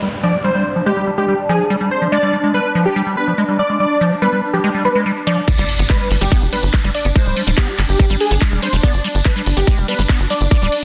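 A squelchy, resonant liquid acid bass riff with chorus and delay opens this alien psychedelic trance excerpt beside a background downlifter, quickly joined by a swarming, granular drone and a thick, detuned unison lead melody with phaser and vibrato, with sidechain pumping on the drone, acid bass and lead and filter sweeps moving through the bass and drone until the drop at 5.5 seconds brings an impact, a tight, up-front electronic kick, a layered garage kit of crash cymbal, handclaps and hi-hat, a jingly, distant tambourine and a punchy, nasal sequencer bass, set in a dense, heavily limited modern master.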